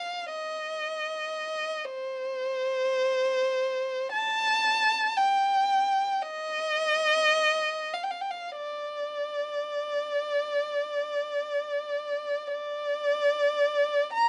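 A warm solo violin, bowed by a single player and placed up front, sings a nostalgic, serene classical line in free, rubato time, its smooth top enriched by vibrato and portamento within light reverb across this brief fragment of a longer piece.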